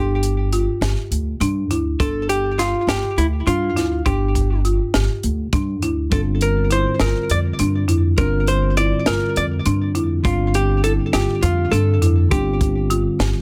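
Progressive instrumental band music in 7/8 at 204 BPM, counted in eighths with a straight feel, set in G dorian and carrying a tense, brooding mood. A dark, clean hollow-body archtop guitar, picked and up front, carries the melody through a digital delay, while a folk marimba struck with medium mallets spins rustic arpeggios on hardwood bars, its sound boxy as if in a small room. The pizzicato upright bass sits prominently, its steel strings giving a woody, warm tone, and a compact cocktail drum kit joins at 0.2 seconds with hi-hat, a punchy kick and a high-tuned snare, all acoustic and dry. At 6.1 seconds a clean tine electric piano enters with accompaniment heard through its built-in speakers, as the harmony moves from G5 to G7sus4. Light reverb surrounds the band in a dense, heavily limited modern master with a faint mains hum, and the passage is cut from a longer piece.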